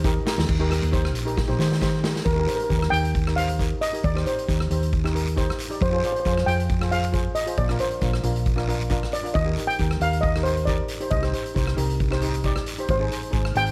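Set in light studio reverb under a layer of vinyl crackle, this bouncy, festive calypso fragment opens with fills on a boomy, airy street-band drum kit with dark cymbals. A mellow, shimmering double-seconds steel pan plays accompaniment up front over a round, amped hollow-body electric bass and a raspy, close guiro, and a dark, smooth cello-pan steel pan joins with the melody at 2.3 seconds.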